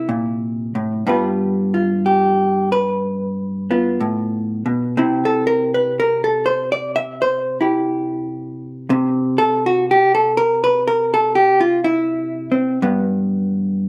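Playful and swinging, this short slice of a longer solo jazz piece at 61 BPM features a lone vintage hollow-body electric guitar, dark, clean and compressed with picked notes and a slapback echo, sitting up front in a dry, open-air sound as it moves from C7 through G7 and C before landing on G at 12.8 seconds.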